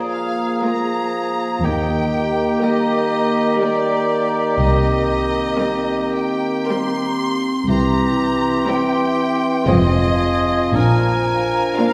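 A slow, lyrical romantic orchestral movement in three, pulled about with rubato, opens with a clear, intense violin section carrying the melody. Around it sit a dark clarinet, an airy, hollow flute, a vintage-toned oboe and a very quiet, focused second violin line, while a viola section and bassoon accompany and a French horn section holds sustained chords in the background. At 1.6 seconds woody cellos and an expressive double bass section enter beneath to carry the bass, all heard from further back on a scoring stage with wet reverb that gives this excerpt of a longer piece a warm, spacious glow.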